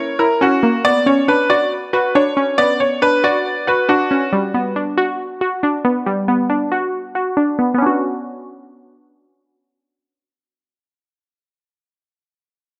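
A bright, woody upright piano, slightly detuned and up front with a digital delay, carries the melody from the start until 4.3 seconds in this ominous, cold half-time hip hop excerpt at 138 BPM in B harmonic minor. Beneath it, a glassy wavetable pluck with a crystalline, evolving tone, a noise layer and chorus plays the accompaniment through 12.3 seconds. The harmony moves from F#7 through Bmadd9 and Gmaj7, and the pluck's filter sweeps from 0.8 to 7.8 seconds. A lush hall reverb and a low-pass filter shape the overall sound.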